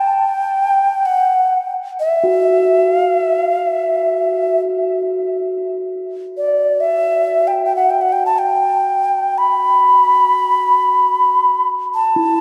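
World meditative music in free time and a haunting mood, this excerpt features a breathy, clay-toned alto ocarina carrying the melody up front with vibrato, a soft attack, an unsteady quality and a diffuse ambient delay, while from 2.2 seconds a bronze singing bowl played with a suede striker adds a metallic, ringing texture with slow beating from a boxy small room, all in a dreamy mix soaked in plate reverb with lossy compression artefacts.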